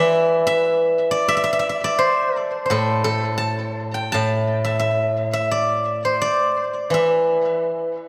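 A steel-string zither, plucked with fingerpicks, carries this brief, contemplative passage of Chinese traditional solo music, its silvery, ringing tone sitting up front and spanning a range from A2 to A5. The playing moves in a free, rubato feel with an elegant poise. Tape echo and a lush hall reverb give the 8.1-second fragment, cut from a longer piece, a dreamy quality.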